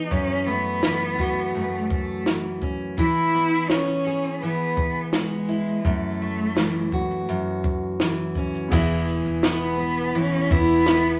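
Easy-going and carefree, this short acoustic pop excerpt moves at an unhurried 84 BPM in a straight 4/4, settled in E major. A bowed cello carries the melody with vibrato and portamento, its expressive single voice sitting up front yet carrying a distant air. Beneath it, a fingerpicked dreadnought steel-string guitar supplies warm accompaniment, with finger squeaks audible as the harmony moves between F#m7 and E. A compact cocktail drum kit sits close in a small room, its dark, smooth sound built from a punchy kick, a high-tuned snare, shaker and crash cymbal. At 8.7 seconds a felt-muted upright piano enters softly in the background, mellow and vintage in tone, alongside a woody, thumpy pizzicato upright bass on gut strings, and a very quiet, jingly tambourine joins close and dry at 9.4 seconds. A moderate studio reverb of about 0.8 seconds surrounds the whole.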